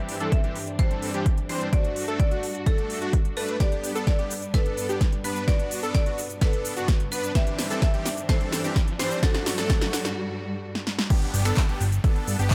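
Light reverb and a digital ambience give this festival progressive house excerpt a polished, euphoric and triumphant sheen, moving at 128 BPM in a straight 4/4 in G major. Huge, detuned supersaw chords carry the riff, joined by a lush string section holding sustained chords under a low-pass filter, while a catchy, plucky unison lead spins arpeggios in the background through phaser, subtle chorus and dub echo. Over them, a marimba struck with hard mallets plays a bright, percussive melody with dub echo, and the strings, supersaws and pluck all breathe with sidechain pumping. A punchy electronic kick sits up front beside a layered big-room kit of crisp hats, snare, handclaps, finger snaps, shaker and crash, with drum fills and a filter sweep driving the build-up as a very quiet riser and downlifter creep in. After a break at 10.2 s, the drop lands at 11.1 s on a G chord, and a fat, thick analog bass rumbles in at 11.3 s, pumping against the kick.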